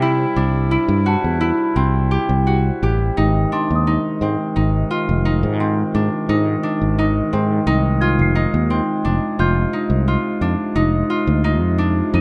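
A direct fretless electric bass sits up front in this shimmering, hopeful piece of contemporary chamber music, cut from a longer work and moving in an uneven 9/8 with a straight feel. Beside it, a concert harp plays ringing, fingerpicked arpeggios in its middle register, close and present. A warm woodwind section holds sustained chords in a smooth-topped classical style, with light vibrato and a punchy edge. In the background, a celesta adds a delicate, bell-like texture high above, its soft felt hammers giving a mellow, dark sweetness. Light reverb surrounds the ensemble, and the harmony moves from C to Ab at 3.2 s and on to Fm at 9.4 s.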